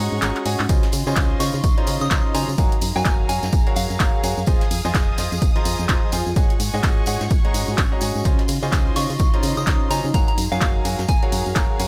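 A dry, close mix carries this uplifting piano house cut at 127 BPM in Db major with a swung 16th-note feel, where a bright grand piano riff roughened by vintage 12-bit sampler grit plays over a round, dark FM bass, lush distant strings and an ethereal chorused pad, all four pumping against an up-front, tape-warm electronic kick that enters at 0.7 seconds after a short break and drum fill, joined by punchy analog drum-machine claps, hi-hat and ride, a very quiet brushed kit, and a tambourine in the background, while a soft, pure synth bell with chorus, phaser and dub echo floats in from 1.4 to 4.4 seconds and again from 9.0 seconds over chords moving through Ab7sus4, Dbmaj9, Gbmaj9 and Fm7.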